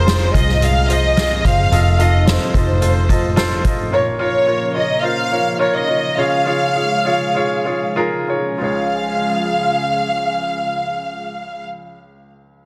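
A smooth, vibrato-rich violin section carries the melody from the outset of this anthemic piano-driven pop excerpt, over a clear, polished baby grand piano, a thick, detuned sawtooth pad with chorus, a round, punchy muted electric bass and a soft-mallet drum kit with a boomy kick. The drums and bass drop out around 3.8 seconds, after which the pace slows until about 8.6 seconds, as the strings, piano and pad move from a minor chord to a major one. The mix has light small-room reverb and a dense, heavily limited modern finish.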